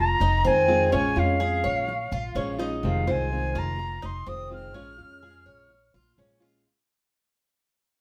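Heard from further back in a wet studio room, this nostalgic Latin fragment at 126 BPM fades out from start to finish as an airy, tongued concert flute with vibrato carries the melody up high over metallic, double-strung Cuban tres arpeggios, a woody, thumpy pizzicato upright bass, and a small, bright fingerpicked nylon-string guitar that joins at 0.4 seconds, while the harmony moves between Fm7 and Bbm7.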